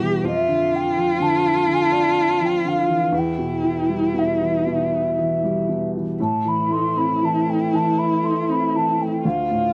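A dry, close studio sound in a 1970s style, touched with reverb, frames this brief excerpt of a Celtic slow air in A minor, moving rubato in 6/8 at roughly 39-42 BPM with a longing, haunting mood. A boxy upright piano sits up front with audible action noise and long sustain, accompanying over Dm/F, Em and Am, while a single bowed cello, dark and expressive with vibrato, portamento and a soft attack, carries a second line, also up front. From 0.3 seconds a baroque flute sings the melody, its hollow, pure, tongued tone set at a distance and colored with vibrato.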